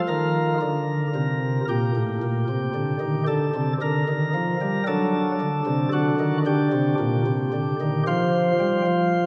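Majestic yet serene, this brief classical chorale-style excerpt at a slow, rubato 56 BPM in 3/4 features a solo chamber organ whose light, sparkling flute stops, with their bright chiff, sit up front in a wet church reverb, moving from Bb/D through Gm and D to settle on F5 by 8.1 seconds.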